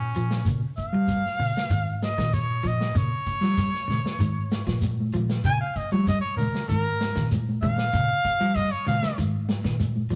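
A bright, up-front trumpet with vibrato carries a funky, intense afrobeat solo over a Bbm7 groove at 96 BPM in Bb dorian, drawn from a longer piece. Underneath, a round, dark hollow-body bass, an acoustic vintage drum kit with punchy kick and rolled-off top, a grainy shekere and a clean picked guitar playing arpeggios in the background hold the groove, with thick-skinned congas under soft hands joining at 3.9 seconds. The rough rehearsal-room recording sits in a moderate stone-room reverb.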